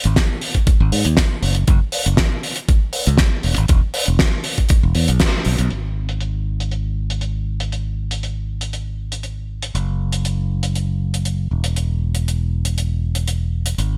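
The sound is bright and dry in a crisp 1980s-style digital production, with every part placed up front and sitting close. This sleek, groovy nu-disco piece, cut from a longer track, moves in a straight 4/4 feel. A damped 70s drum kit plays hi-hat and a fat snare with a rolled-off top, its hats, snare and room passed through low-pass filters and touched with studio and gated reverb. A layered electronic kick adds a knocking, produced punch with its own studio reverb, and a growly, direct fingered electric bass runs from E1 to G#2. The full band hits an accent at 5.2 seconds, the kick drops out at 5.3 seconds, and a new section begins at 5.7 seconds, where the acoustic kit and bass carry the groove to the end.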